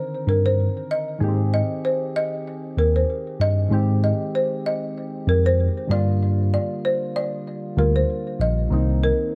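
Smooth and sultry, this afrobeats excerpt moves at 96 BPM in 4/4 with a gentle swing on the sixteenths, over chords of Cm9, Abmaj7, Gm7 and Cm7. A woody, rustic folk marimba played with soft mallets carries the melody up front with tape echo, while round, gentle synth keys with chorus fill in the accompaniment. A mellow, clean tine electric piano holds down the bass from 0.3 seconds, heard as if through built-in speakers and sitting forward in the studio ambience.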